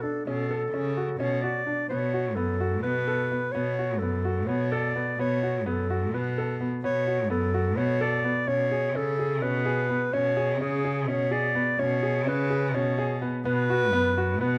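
A moderate recital hall reverb surrounds this excerpt of contemporary chamber music in B dorian, set in 7/8 at 254 BPM in eighths, with a straight, urgent and hypnotic feel. The up-front solo clarinet carries the melody with a soft attack and classical poise, while a natural-sounding baby grand piano spins arpeggios and a single bowed cello, entering at 0.3 s, plays the bass sul tasto with a rich, pure, floating tone and a smooth top. The harmony rests on B throughout, moving from F#m/B through B7sus2 and Bsus2 before settling on B5 at 13.5 s.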